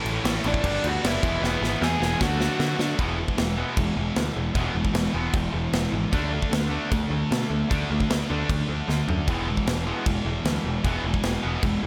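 Two double-tracked, picked electric guitars open this rowdy, rebellious punk rock excerpt at 153 BPM in E mixolydian, one distorted and the other warm and overdriven, pounding out a straight 4/4 riff over a growling, overdriven picked bass and a big, up-front acoustic rock kit with a punchy kick, medium-tuned snare, bright crash, toms and drum fills. A dark, smooth lead guitar, overdriven and trailed by digital delay, sings a short melody from 0.5 to 2.8 s, and the riffing then moves into a new section at 3.0 s, shifting to a D5 power chord before landing back on E. Light reverb surrounds the band, and the kit rings in a big room.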